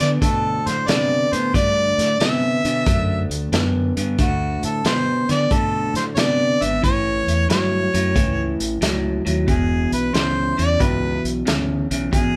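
A mellow, overdriven harmonica carries the melody up front in this gritty, soulful electric blues shuffle, its jazz-style solo line colored by light vibrato, scooped notes and a smooth top. Beneath it at 91 BPM with a swung feel, a slightly broken-up, compressed electric guitar picks a riff through a small old amp, a fingered electric bass holds the low end, and a muffled, lo-fi vintage kit with punchy kick, medium-tuned snare and hi-hat sits close in a small room. The band plays live together with light reverb, moving from D7(no3) to A6 at 6.8 seconds and E6 at 9.5 seconds in this short section cut from a longer piece.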